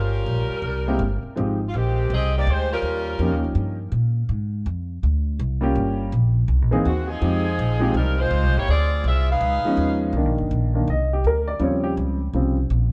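Heard from further back in the room with a light reverb, this short big band swing excerpt has a swinging, sultry mood and a swung feel. A bright saxophone section carries the melody with light vibrato and a smooth top, stepping away at 3.4 seconds and returning at 6.9 seconds. Underneath, a woody, dark upright bass with steel strings is plucked pizzicato, up front throughout. A clear baby grand piano provides the accompaniment and then takes a solo at 10.1 seconds as the music moves into a new section. Extended and altered chords such as Gm7b5, C7alt, Fm9 and Eb13 give the harmony its sultry colour.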